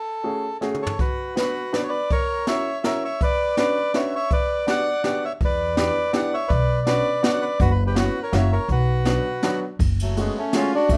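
A reedy, dark bandoneon opens this whirling, bittersweet musette waltz in B harmonic minor, carrying the melody up front at 164 BPM in a lightly swung 3/4, with a woody upright piano and a brushed drum kit joining within the first second as the kit plays a short fill. The drums have dark cymbals, a high-tuned snare and a boomy kick in an acoustic studio room, while the piano accompanies with short sustain. At 5.4 seconds a thumpy pizzicato upright bass with steel strings enters prominently, and moderate studio reverb surrounds this excerpt, cut from a longer piece.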